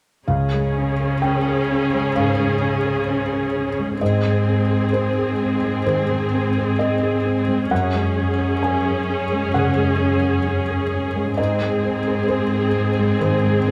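Close, detailed microphones and a light reverb frame this short, uplifting excerpt of cinematic film score, moving at a rubato 65 BPM in 4/4 through Db, Ab and Gbsus2 chords. A felt-muted upright piano sits up front with a soft, mellow, intimate tone, its short sustain and audible action noise giving it a natural presence, while a viola section adds vibrato and portamento with a smooth top. Underneath, a rich cello section carries the bass with soft attacks and lush bowed expression, all three parts playing together from 0.3 to 13.7 seconds.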